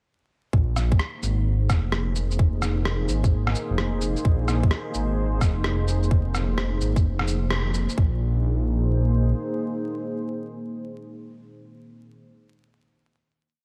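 Rainy and melancholic, this short future garage piece at 129 BPM swings its 16ths as a muffled, tape-warm two-step kick and a skittering, pitched-down rim click and shaker ride over a deep, rumbling detuned saw bass of long gliding notes and a moody analog pad with chorus that pumps against the sidechain, moving from Fm7 to a final Bb9sus4 chord at 8.0 seconds that the pad holds until 12.3 seconds, all under light reverb and vinyl crackle.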